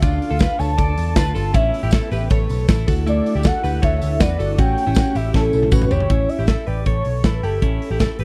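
Jangly indie pop at 158 BPM in a straight 4/4, this breezy passage sits in A mixolydian, moving through Dm, Aadd9, Dadd9 and A7 before landing on A. A velvety, detuned synth lead carries the melody with chorus, vibrato and slapback echo, while a clean twelve-string electric guitar plays twangy, compressed arpeggios through spring reverb and its own slapback echo. Underneath, a round, foam-muted vintage picked bass anchors the low end. A big acoustic rock kit with a punchy kick and bright cymbals sits up front, rolling into a drum fill from 5.3 to 6.1 seconds. An organ-like ensemble string part holds soft, sustained chords in the background alongside a jingly tambourine, and both fall away near 6 seconds as the music moves into a new section. The mix is dry and close, with a 1970s studio character.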